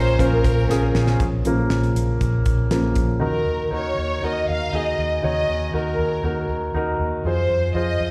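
A lush, bowed violin section carries the melody from the opening moment of this dramatic, bittersweet piano-driven pop excerpt. Its soft attack and expressive vibrato are touched by slapback echo and digital delay. Beneath it, a polished grand piano sits up front with its own slapback echo, and a round, foam-muted electric bass anchors the low end. A mellow tonewheel organ holds dark, clean sustained chords in the background through a slow rotary speaker, with audible key click. At 119 BPM in a straight 4/4, a damped 70s kit with a fat snare, tight kick and hi-hat plays a fill alongside a very quiet, jingly tambourine, and the kit stops at 3.1 seconds. The piano takes a solo from 1.2 to 3.2 seconds over B-flat minor, after which the harmony moves to E-flat minor and later F minor, all heard as a live gig through the venue's PA with light recital hall reverb.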